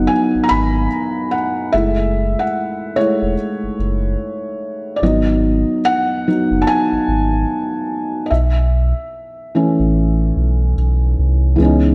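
A moderate scoring-stage reverb surrounds this melancholic, nostalgic lo-fi hip hop excerpt at 73 BPM with a lazy 16th-note swing, where a dark, intimate felt-muted upright piano with cassette tape colour, thick felt and audible action noise takes a solo over G#m7, F#m7 and B7sus4 chords while an up-front, deep sine-and-triangle sub bass with an added octave and fast attack sustains beneath it from 0.0 to 11.9 seconds.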